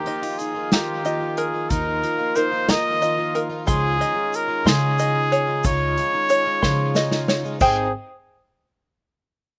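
Dry and close, this nostalgic, anthemic indie folk excerpt in 6/8 builds around a soft-attack, classical-style trumpet melody up front. Beneath it sit a fingerpicked jumbo steel-string guitar with slapback echo that drops out at 3.6 seconds, a bright, shimmering twelve-string, and a reedy, breathing harmonium in the background. Plunky open-back banjo arpeggios and woody pizzicato upright bass sound from the start, along with a punchy acoustic drum kit played with bundle sticks that rolls into a fill from 6.6 seconds, and a grainy egg shaker entering at 0.4 seconds.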